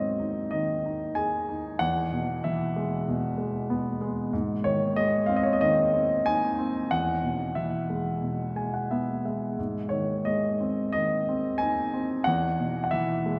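A polished grand piano sits up front and present, carrying this lyrical classical solo in a hopeful, warm mood across the full 13.4 seconds, a passage cut from a longer piece. The playing moves with an unhurried rubato in 4/4, spanning the range from E2 to Ab5. The harmony sways between Ab and E chords, settling on an E5 near the close. A brief piano fill stands out between 8.2 and 9.6 seconds. Heavy cathedral reverb places the instrument in a vast, echoing space, with long tails that linger around every phrase.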